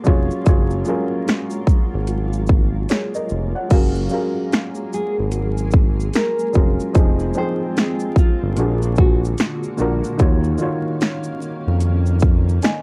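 Lo-fi hip hop with a dreamy, nostalgic mood, moving at 74 BPM in 4/4 with a swung sixteenth-note feel in F# major, cut from a longer piece. A punchy, layered electronic drum kit sits up front with metallic hats, finger snaps, shaker and crash, given a cassette tape colour, while a smooth sawtooth-and-triangle synth bass holds the low end with a fast attack and sustained notes. A dark, worn upright piano plays the accompaniment through a low-pass filter, its woody tone slightly detuned and carrying audible action noise, beneath a blurred granular pad of slow-attack sine chords with its own reverb and a long release. At 3.7 seconds a fingerpicked nylon-string guitar enters with a full-bodied classical melody, filtered and passed through tape echo and plate reverb, before falling away at 9.2 seconds. The harmony drifts from F#maj9 through Fm7 and A#7b13 to D#m9, and the whole home-recorded cassette sound is wrapped in light reverb and vinyl crackle.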